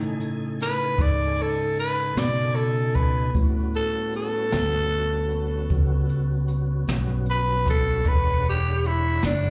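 A slow blues in a straight 12/8 feel, this soulful, swaggering clip, cut from a longer piece, is carried by a growling tenor saxophone solo that runs through the whole 9.5 seconds. The saxophone sits up front with a raspy, breathy edge, its jazz-style lines colored by slapback echo and a digital delay. Beneath it, a tonewheel organ holds sustained chords in a clean, clear tone, with chorus vibrato, audible key click and a slow rotary speaker, set lower in the mix than the other parts. A fingered electric bass gives a round, dark low end, direct and amped and placed up front, while a jazz kit played with brushes enters at 0.2 seconds, its boomy kick and high-tuned snare sounding smooth in a small room. The harmony moves through B13, A13 and E13 chords, and the performance comes across as a live gig heard through the venue's PA with a touch of club reverb.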